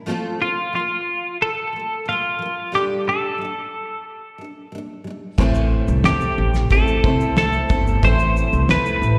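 In a steady, straight 4/4, this wistful, reflective acoustic pop piece opens on a double-tracked, full-bodied steel-string acoustic guitar, picked with audible finger squeak. At 0.4 seconds a twangy, compressed twelve-string electric guitar joins up front to carry the melody with slapback echo and delay. At 5.4 seconds, three parts enter together: a woody, thumpy pizzicato upright bass, a cloth-damped drum kit with a fat snare, tight kick, shaker and dark crash, and a brilliant, slightly detuned upright piano sitting in the background, all set in a small-room ambience and recital hall reverb that sound like a live gig heard through the venue's PA.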